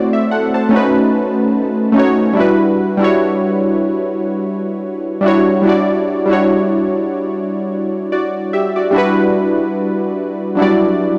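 Round, detuned sawtooth analog keys with chorus and a filter sweep play alone up front in this nostalgic, reflective hip hop cut at 73 BPM, swinging gently in E dorian through F#m7b5, B7 and Em7 before shifting into a new section at 8.9 s, all captured in a dry, gritty hardware recording with light reverb.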